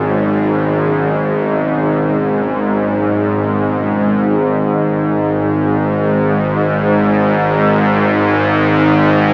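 A tense, string-like bowed drone sits up front from the start, its low sawtooth tone carrying vibrato and its own reverb, while a very quiet evolving pad with a resonant filter swell, chorus and phaser and a soft, metallic bronze singing bowl struck with a felt mallet ring faintly beneath it. At 4.3 seconds the pad and bowl fall away, leaving the drone alone until the cut at 9.3 seconds. This ominous, unsettling dark ambient fragment of a longer piece is bathed in a huge, cavernous reverb and has a hazy cassette, small-speaker character.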